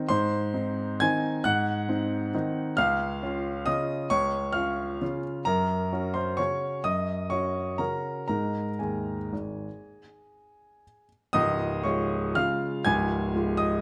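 An upright piano plays alone from the start, carrying a graceful, sparkling classical waltz in 3/4 and Db major, its rubato tempo moving between 115 and 142 BPM. The instrument sounds woody and intimate, with audible action noise and long sustain, and it sits up front through close, detailed microphones in a moderate recital hall reverb. The passage, cut from a longer piece, turns to a new section at 11.3 seconds before breaking off at 13.8 seconds.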